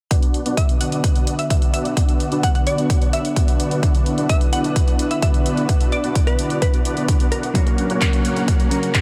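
A punchy, up-front electronic kick drives this 129 BPM festival progressive house excerpt in straight 4/4, alongside handclaps and hi-hat from a big-room dance kit under a lush, warbling unison pad with sidechain pumping, a huge, thick detuned supersaw riff through a low-pass filter and tape echo, and a glassy, crystalline wavetable pluck melody from 0.6 seconds, before a dark, clean electric guitar enters at 7.5 seconds as the harmony moves from B minor to F#, all in an emotional, anthemic mood with light reverb.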